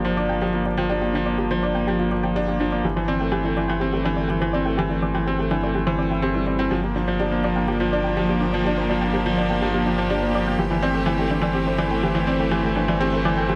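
A straight 4/4 pulse at 124 BPM carries this intimate, melancholic piano-and-strings electronica fragment in G dorian, where a woody, up-front upright piano riff with audible action noise and digital delay rides a deep, round analog bass on G1 while a soft, mellow plucked synth adds chorused, delayed arpeggios in the background; a distant, bowed string quartet with vibrato enters at 6.7 seconds with sustained chords over the alternating Gm7 and Am7/G harmony, all bathed in a huge ambient reverb.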